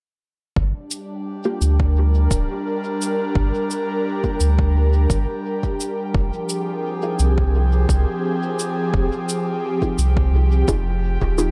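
A lightly swung 86 BPM pulse in 4/4 sets this hazy, deep ambient dub excerpt moving over Gm then Fm7, with an overdriven electronic kick re-recorded in a large room, a round, soft sub bass up front, a breathy detuned pad sustaining chords with chorus, a brushed cabasa trailing dub echo from 0.9 seconds, and muted, warbling chord stabs entering at 1.4 seconds through phaser, analog chorus and echo, all set in light digital ambience.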